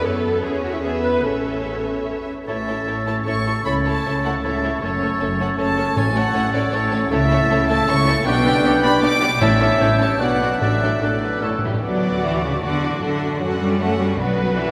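Moving in a quick, pliant three with rubato, this spirited classical-period orchestral excerpt opens on strings alone: an intimate, lightly vibrato violin melody over a more distant second violin line, lush violas, rich cellos and soft-edged double basses. At 2.5 s a hollow, pure flute, a smooth oboe and a dark clarinet add second lines while mellow French horns hold chords beneath. Very quiet timpani touch in at 6.0 s, then return at 9.4 s and close with a brief fill that ends at 11.8 s. The strings then finish the passage by themselves, with the whole orchestra bathed in a long, wet cathedral reverb.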